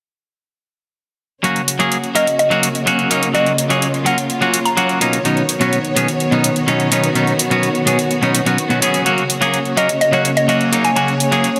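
Over a straight 4/4 pulse at 126 BPM, metallic electronic hi-hats drive this anthemic, euphoric festival progressive house excerpt in F# major, where a bright, twangy clean electric guitar with tape echo plays accompaniment and a lush, up-front bowed string section holds sustained chords from F# to Badd9 and back, while a woody, round FM synth pluck with chorus, phaser and tape echo carries the melody from 2.2 s and returns at 9.8 s, all set in a moderate concert hall reverb.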